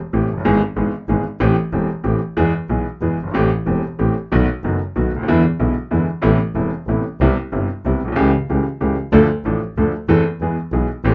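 A bright, woody upright piano with long sustain carries the accompaniment in this melancholic, dramatic tango excerpt in A minor, moving in a rubato 3/4 at 187 BPM through chords from E/G# and Am7 to B7, Cmaj7 and Dm alongside an earthy, bowed double bass with light vibrato, both up front in a rough home demo mix with light reverb.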